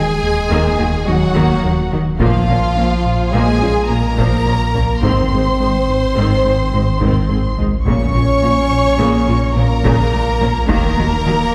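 Heard from further back in a wet scoring stage, this brooding, tense excerpt of hybrid orchestral and electronic film score moves in an uneven five-beat metre. Two bowed violin sections carry a lush, expressive melody and a focused second line with vibrato over punchy French horn chords, a dark, wave-folded analog bass riff in the background and a deep sine sub bass, all sounding from the start. Close violas and very quiet cellos and double basses join at 0.5 s, and a very quiet taiko ensemble with heavy sticks enters at 1.4 s.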